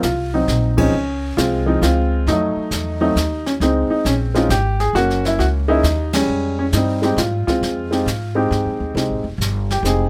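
The baby grand piano carries the melody with a warm, natural tone and short sustain, sitting up front in this swinging, late-night jazz piano trio excerpt in F minor. Set in 3/4 at 135 BPM with a swung eighth-note feel, the tune moves through rich harmony, opening on a rootless Ab13 and passing through Dbmaj7, F7b9, Bbm11 and Gb7 before settling on Fm9. The pizzicato upright bass is woody and present, its steel strings giving the low line a clear, forward presence beneath the piano. Played with brushes in a small room, the drum kit is airy and polished, with dark cymbals, a medium-tuned snare and a boomy kick supporting the group from further back. The whole trio hits accents together at 0.7 and 6.1 seconds, and the piano moves into a solo at 9.0 seconds. The sound is dry, with little reverb.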